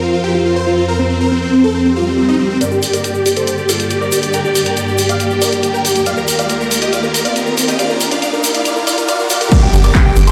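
A huge, detuned supersaw lead carries a euphoric, bittersweet melody in G minor over lush bowed strings holding sustained chords from the very start, both breathing with sidechain pumping, the lead also shaded by a low-pass filter and delay. This uplifting trance passage at 139 BPM opens on an Fsus4 chord, and an electronic swell at 1.9 seconds leads into a build-up at 2.6 seconds, where a layered techno drum kit with crash, handclaps and hi-hats arrives alongside a grainy, bright tube shaker sitting in the background. Through the build a riser climbs while a filter sweep works on the supersaw, and the harmony moves from Gm to Ebadd9. At 9.5 seconds the music lands back on Gm as a punchy, tape-toned analog kick hits up front, a catchy plucky unison lead enters in the background on a high second line, and a tight, driving sequencer bass anchors G1 from 9.7 seconds. A moderate, huge stone-room reverb surrounds the mix, giving it the feel of a big sound system playing in a bare hall.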